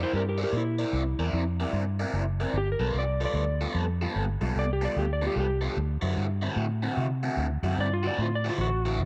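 A crunchy, overdriven guitar sits up front with a bright, picked riff coated in phaser, giving this swinging blues fragment its swaggering edge. Beneath it, a vintage fingered electric bass holds the low end with a dark, round, punchy tone, its foam-muted notes amped and close. A clean lap steel guitar carries the melody with a dusky slide voice, adding a soulful sheen over the riff. The harmony moves from C9 to G9 at 2.5 seconds and on to D9 at 5.8 seconds, all in a swung eighth-note feel. A moderate spring reverb lends the sound a vintage glow, and the passage plays as a brief section cut from a longer piece.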